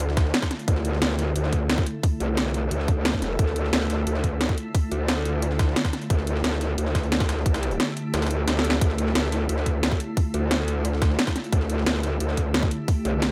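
Mechanical and futuristic, this is a short cut of dark technical drum and bass at 177 BPM in straight 4/4, sitting in D minor and opening on a Dmadd9 chord. An up-front growl bass carries the low end, aggressive and wobbling with a formant-filtered, saturated snarl, thickened by chorus and overdrive and pumping against the sidechain. Behind it, a swarming drone sustains chords with a tense, warbling, detuned unison texture that evolves through granular movement and a moving notch, bathed in its own reverb and also pumping. The main drum and bass kit is overdriven and forward, with a cracking snare and bright hats, layered over a tight, overdriven electronic kick that enters at 0.2 seconds. A sampler-style breakbeat kit sits in the background, gritty and pitched up with a high-tuned snare, high-passed hats and snare, and a tape-warm tone. Around 8.1 seconds the kick drops out briefly while a drum fill from 8.5 seconds leads back in, all set in a digital ambience.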